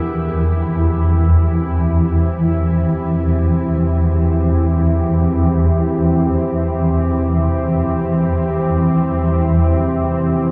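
Dark and desolate, this dark ambient drone drifts in free time, cut from a longer piece and set in a vast, echoing space with a long cathedral reverb. Underneath, a swarming drone holds from E2 to E3 for the full 10.5 seconds, its granular, detuned tone tense and evolving with a moving notch. Above it, a deep pad sustains moody chords centred on C from C4 to E5, its sawtooth body thickened by a sub octave and chorus. For only the first 3.1 seconds, a very quiet FM synth bell traces eerie, inharmonic arpeggios between D4 and A#4, warbling through chorus and phaser with a vintage character. The drone and pad sit up front with a mellow, slow-attack softness, while lossy compression artefacts lend the sound a faint haze.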